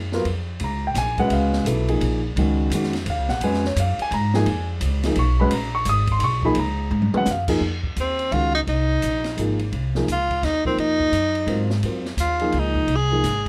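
A woody pizzicato upright bass opens this spiritual, hypnotic modal jazz piece in a swung 3/4 at 171 BPM, joined at once by a dark, mellow grand piano and an open acoustic drum kit with dark cymbals and a boomy kick; after a drum fill at 6.9 seconds the music shifts from Bb phrygian to F phrygian, and a clear tenor saxophone enters up front at 8.0 seconds with light vibrato and scooped notes, all set in light reverb.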